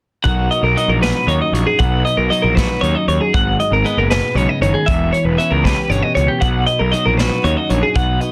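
Two clean, picked twelve-string electric guitars open at 0.2 s in this bright, intricate fragment of math rock and midwest emo, cut from a longer piece and moving at 78 BPM in a straight 6/8 in B major. One guitar carries the accompaniment in a twangy, compressed, up-front voice, while the other spins higher arpeggios colored by a vibrato effect. A fuzz-laden picked electric bass joins at 0.3 s, overdriven and growly, sitting up front with a direct-and-amped character. A vintage brush drum kit enters at the same moment, playing hi-hat, kick and a medium-tuned snare with brushes in a studio room, its tight kick and rolled-off top giving it a warm character. The harmony moves from Bmaj9 to G#m11, Em6 and back to Bmaj9, all captured dry with little reverb and pressed into a dense, heavily limited modern master.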